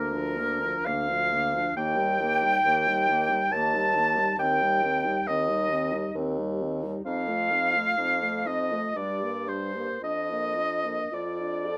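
From the first moment, the full wind quintet plays together in a serene, slow romantic classical movement in Bb major and 3/4 at 54-70 BPM with a rubato feel: an airy, vibrato-touched flute sings the melody from the background while an up-front, warm oboe carries the second line, and a mellow clarinet and a punchy, distant French horn fill in the accompaniment above a roomy bassoon bass, set in light reverb and cut from a longer piece.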